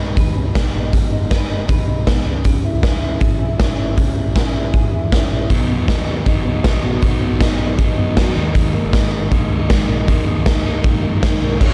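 The sound is dry, with little reverb around the players. At 157 BPM in a straight 4/4, this short cut from a longer jangly indie pop piece feels restless and wistful as it moves through G#m7, C#m, B and D#sus4. An electric guitar through a small old amp plays picked arpeggios from the start, slightly broken-up and compressed, coloured by analog chorus and delay while sitting in the background. Beneath it, a vintage muted fingered electric bass gives a dark, round, foam-muted low end. A raw garage drum kit comes in at 0.2 seconds and sits up front, gritty and saturated with a punchy kick, a medium-tuned snare, hi-hat and crash, all in a bright, pumping stone room with a rolled-off top. At 5.5 seconds a crunchy overdriven guitar joins with picked accompaniment.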